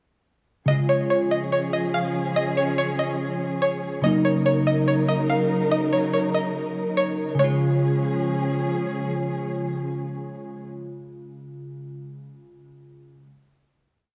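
A half-time trap groove at 143 BPM in Db major frames this dreamy, wistful hip hop piece, where a twangy, string-like resonator pluck loops its bright melody through chorus and tape echo over glassy digital keys holding spread chords and a veiled, con sordino string section sustaining a dark pad, all bathed in a lush hall reverb with cassette-tape grit, the pluck falling away at 8.6 s as the strings settle onto a final Db chord and the keys linger until 13.3 s.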